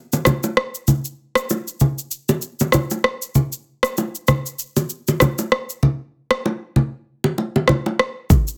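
A swung 16th-note groove at 97 BPM in 4/4 drives this breezy, joyful afrobeats clip, cut from a longer piece. An electronic, produced afro-pop drum kit sits up front, built on a deep kick drum, a rim click and a shaker, with soft clipping adding grit to the snare. Acoustic bongos and congas share the foreground, their small-room tone warm against the drum machine's polish. The hi-hats drop out from 5.8 to 8.3 seconds, briefly thinning the top of the beat. Light reverb and a dense, heavily limited modern master keep the whole groove punchy and tightly packed.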